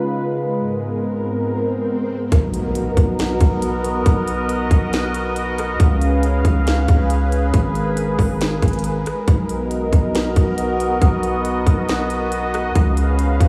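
A detuned, warbling sawtooth pad opens this dreamy, blissful cloud-rap fragment, its vintage sustained chords carrying lush chorus and a low-pass filter as they move between C#7, G#madd9 and Bmaj7. A background electronic swell rises at 1.2 seconds into an impact at 2.3 seconds, where an up-front trap kit of hard-clipped kick, sharp snare, crisp hats and rim clicks arrives in a half-time feel, alongside a deep, mellow sine 808 bass with long decaying notes. The whole mix is soaked in a huge ambient reverb over small-room ambience.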